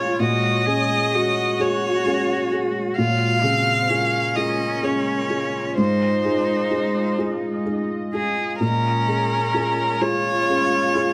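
Neoclassical piano and strings excerpt in Bb minor, fragile and reflective, unfolding in a rubato 6/8 at 43 BPM with tuning at A4 = 437 Hz: a clear, focused solo violin carries the bowed melody with vibrato through plate reverb, while a rich cello sings a second line with soft attacks and expressive portamento. A felt-muted upright piano sits up front with mellow, boxy, intimate accompaniment, and a deep, moody detuned sawtooth-and-sine pad with chorus holds slow-attack chords beneath. The harmony moves through Gbadd9, Bbm7 and Fm7/Ab before returning to Bbm7, all set in a moderate studio room.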